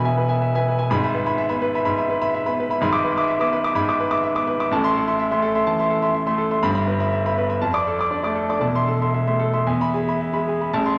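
A clear concert grand piano carries this passionate, stormy classical study alone from 0.0 to 11.0 s, sitting up front with a deep bass and a smooth, vintage tone. The virtuoso writing spans from E1 to D6, and the pulse moves in four with a free, rubato feel that lets the phrasing push and pull. The harmony opens on E, leans through E7/G# toward Am at 4.7 s, then passes through Em/G, Dm/F and Am/E before settling back on E at 9.7 s. A wet recital hall reverb surrounds the instrument, giving each gesture a lingering, resonant bloom. Cut from a longer piece, the passage plays as a single turbulent section.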